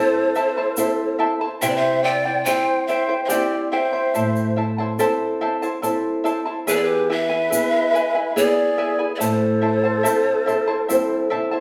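The rhythm is an unhurried three-beat sway, played straight, and a grainy tube shaker enters at 0.4 seconds to mark it with a compressed, saturated edge. Over this Andean folk ensemble, a breathy bamboo pan flute carries the melody with a crisp, chiffy attack and expressive vibrato, while a bright, airy wooden quena plays a second line just beneath it, tongued and full of lifted highs. Below them, a fingerpicked charango sits up front with shimmering double strings, some doubled at the octave, alongside a dark, boxy nylon-string guitar. The harmony moves through minor and major chords, settling on E before returning home, and the guitar adds a fill from 10.1 seconds to the close at 11.6 seconds. Captured as a band playing live in one room with generous studio reverb, this short cut from a longer piece feels earthy and festive.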